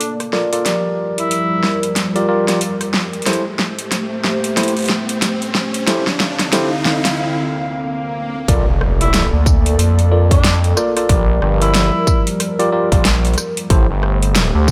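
Swung sixteenths drive this playful, gritty glitch hop excerpt, where a huge-snared dubstep kit with metallic hats joins a dark, detuned analog pad carrying 12-bit sampler grit and sidechain pumping, clean tine electric piano stabs under a filter sweep, background risers and swells, a distant, mellow tenor saxophone with vibrato, and, at the drop at 8.5 seconds, a punchy kick alongside an aggressive, nasal, distorted synth bass.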